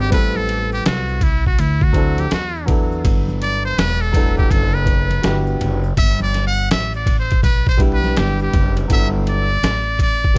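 A cool, relaxed jazz-hop excerpt opens with a buzzy, metal-muted trumpet soloing through analog delay until 8.9 s, over a smooth, vintage grand piano moving through Am7, D7 and Gmaj13 and a woody, up-front pizzicato upright bass, as a gritty, pitched-down boom bap sampler kit with a thumpy kick, hi-hat, snare and ride swings in alongside a faint, close tube shaker and soft-handed congas that drop out at 8.9 s, in a dry mix.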